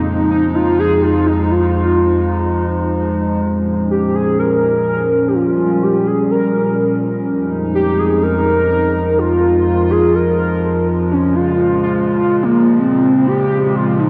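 A warbling, detuned lead with vibrato and portamento glides through chorus and a diffuse ambient delay over a mellow, lo-fi pad of slow-swelling tape-like chords alternating between Fm7 and Bbm7, both parts sitting up front in a dreamy, reverb-soaked hall that gives this short, glitchy, eerie IDM fragment a nostalgic haze.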